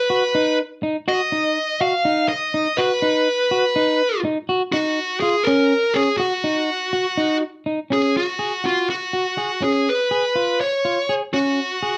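Heard in a moderate studio reverb, this brooding, intricate progressive instrumental moves in 7/8 at 246 BPM counted in eighths, with a dark, distorted, bluesy lead guitar picking the melody up front from 0.0 s while a slightly broken-up electric guitar, fingered and also up front, plays arpeggios from 0.1 s over chords that pass from a rootless Abm7 through Gbmaj7/Eb and Ebm before shifting at 7.9 s to Dbsus4 and Db7, all in a short cut from a longer piece.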